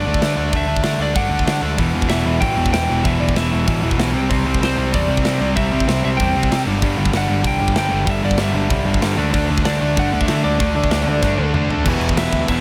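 Up front, a punchy, polished rock drum kit with bright cymbals drives this aggressive, urgent punk rock passage at 191 BPM in E minor alongside a tight distorted guitar riff, a growly picked electric bass and a slightly broken-up, compressed lead guitar melody. They are joined by a hollow-bodied overdriven guitar riff from 1.8 seconds, a drum fill at 11.2 seconds and a raw double-tracked garage guitar in the background from 11.8 seconds, all set in a light reverb.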